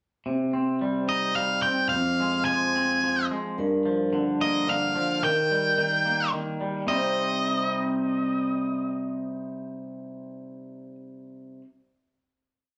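A wet, roomy live-band sound frames this brooding, cathartic post-rock piece in 3/4, where a twangy, compressed electric guitar picks arpeggios through spring reverb from 0.3 s, a dark octave-fuzz lead guitar carries a motif-based melody up front, and a mellow vibraphone with soft mallets rings a background ostinato with medium motor vibrato from 3.6 to 7.2 s, before the piece settles on a final chord at 6.9 s.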